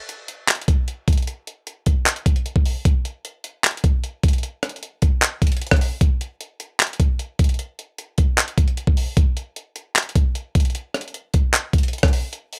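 Brooding and melancholic, this hip hop fragment rides a half-time feel carried entirely by a sampler-style breakbeat kit of kick drum, handclaps, hi-hat and rim click, playing from 0.1 to 12.6 seconds. The kit sits up front, compressed, gritty and pitched up, with a thumpy kick and a tape-warm character, as if re-recorded in a small room. Dry and rough in the manner of a home demo, the passage reaches a break at 12.3 seconds, cut from a longer piece.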